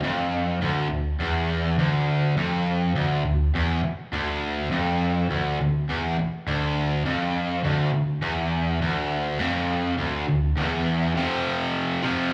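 A cranked stack guitar opens the recording alone, electric and overdriven, playing a menacing, heavy rock figure in D minor at 102 BPM in a straight 4/4. Picked and double-tracked, it sits up front with a bright, biting edge, its slapback echo adding a snappy doubling to each attack. The part stays low, moving between D2 and F3 over a D minor chord before shifting to an F5 at 11.2 seconds for a brief closing section. Heard through a venue's PA with club ambience and light reverb, the sound carries the rough immediacy of a live gig. This short cut from a longer piece ends at 12.3 seconds.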